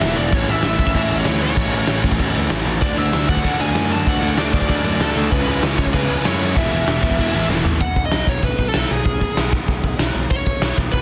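Rowdy, upbeat punk rock at 193 BPM in E mixolydian, cut from a longer piece, where a dark, high-gain lead guitar carries the melody with digital delay over a sludgy distorted guitar riff, a growly overdriven picked bass, and an up-front raw garage drum kit with a punchy kick and gritty, saturated room tone, joined at 2.8 seconds by a biting overdriven second riff guitar until both riff guitars drop out after a drum fill at 7.8 seconds, leaving lead, bass and drums in a dense, dry, heavily limited mix.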